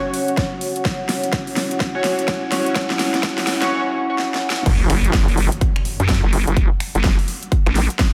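Swung sixteenths at 126 BPM in 4/4 drive this bouncy, aggressive bass house excerpt, where a moody, detuned analog pad carries a filter sweep through the build-up and a warbling, vintage ambient pad hangs in the background, both under overdriven, up-front drums: a punchy electronic kick and a big-room kit of huge snare, metallic hi-hats, finger snaps and crash cymbal. A bright, phased, band-passed chord stab with delay appears during the build, and the drop lands at 4.7 s with a very quiet impact and a nasal, saturated vowel-sweep wobble bass, which pumps to the sidechain along with the analog pad, just as the ambient pad and stab did before it, all in a dreamy, reverb-soaked hall.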